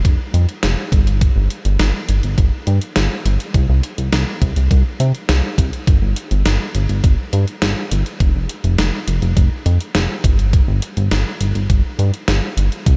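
A glossy, nasal chorused synth bass anchors this nocturnal, melancholic synth-pop fragment, its dark pulse and sawtooth tone shaped by pulse-width modulation and a fast, plucky filter attack before sustaining across the low register. Beside it, an up-front 80s digital drum machine plays hi-hat, a thumpy kick and a snare drenched in gated reverb, with a sampler-style punch and the air of a large room. A light reverb places both parts in a shared space across the 13 seconds, keeping the straight 4/4 groove retro and moody.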